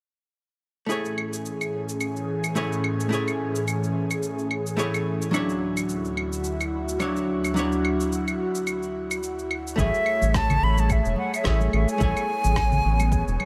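A close, expressive concert flute with vibrato enters at 9.8 seconds to carry the melody through digital delay and shimmer reverb, as a round, mellow analog bass, an overdriven electronic kick and bright, thin-skinned congas join alongside it. Before that, this smooth sunset chillout piece at 108 BPM in A major floats on a dark, clean hollow-body archtop guitar with tape echo and a breathy, detuned pad treated with chorus and phaser, over gritty sampler-style shaker, claves and rim click with a swung sixteenth-note feel. The harmony moves from Amaj7 to Dmaj9 and back to Amaj7 inside a lush hall reverb, in a passage cut from a longer piece.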